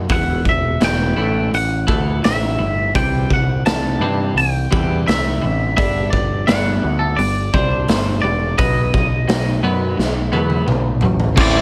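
A brooding, angsty quiet-loud alternative rock excerpt at 85 BPM opens with clean twelve-string electric guitar arpeggios in lush chorus over an up-front growling, overdriven picked bass, joined by a twangy lead guitar melody and a gritty, punchy garage drum kit in a pumping stone room, whose fill from 10.0 seconds leads at 11.4 seconds into a compressed overdriven guitar riff alongside a thick fuzz guitar riff in the background and a very quiet, clear bowed string section holding sustained chords.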